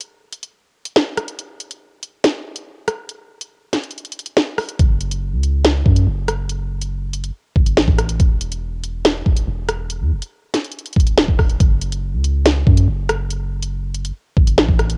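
An ominous, cold drill hip hop excerpt in a half-time feel opens with an up-front electronic drum kit playing alone, its knocking kick, sharp snare, rim clicks and bright hi-hats colored by cassette tape, until a deep, mellow, sine-toned 808-style bass enters at 4.8 seconds with long, fast-attacking, decaying notes, all in a dry home recording on cassette.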